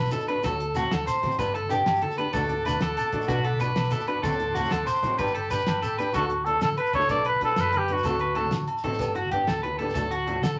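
Joyful and warm, this short highlife guitar band excerpt in D major rolls along at 126 BPM in a straight 12/8, with a twangy, slightly broken-up electric guitar playing arpeggios up front over a dark, round hollow-body bass, a cloth-damped thuddy drum kit with a fat snare, a boxy picked ladder-braced acoustic guitar, and background congas, grainy shekere and ringing agogo bells, while a buzzy vintage combo organ holds sustained chords from 2.3 s, and after a drum fill a raspy, growling trumpet takes the melody at 6.1 s, all within a wet studio reverb and vinyl crackle over a D7, G, D, Bm progression.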